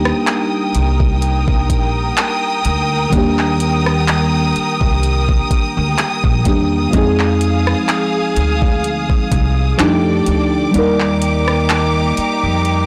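Set at a slow 63 BPM in 4/4 with a light swing on the sixteenths, this smooth, romantic contemporary R&B excerpt in Eb major rests on a produced electronic drum kit of knocking kick, metallic hi-hat, handclaps and rim click, re-recorded in a small room and entering at 0.1 seconds. Beneath it, a pizzicato upright bass with steel strings gives a woody, thumpy low end, colored by tube saturation. Muted, felt-like synth keys carry the accompaniment with a soft, dark, intimate tone, their fast-attack, decaying notes blending triangle and sawtooth waves with a noise layer, a filter sweep and chorus. A lush studio string section holds bowed chords above, focused and smooth on top with vibrato. The harmony moves from Ebmaj7 to Fm7 and F13 before returning to Ebmaj7 at 10.7 seconds, where the kick drops out until the close at 12.9 seconds, all within a digital ambience and a blown-out, overdriven recording.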